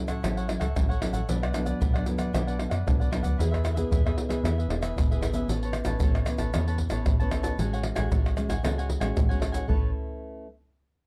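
A dark, warm production with a light reverb frames this short, playful cut from a longer samba and choro piece, moving at a lively 114 BPM in a straight 4/4 in A major, tuned to A4 = 435 Hz. Up front sits a compressed, saturated percussion bed of egg shaker, tight surdo, pandeiro and tamborim, played with soft hands. Beneath it, a metallic FM bass gives a digital, mellow tone with a fast attack and decaying notes, holding the low end. A fingerpicked classical nylon-string guitar carries the accompaniment with audible finger squeak, joined by a crisp, picked cavaquinho higher up. The harmony moves from F#m7/A through Bm and E before settling into Aadd9 and F#madd9/A around 5.5 seconds, returning to Aadd9 at 9.7 seconds, with the guitar ringing on alone until 10.5 seconds.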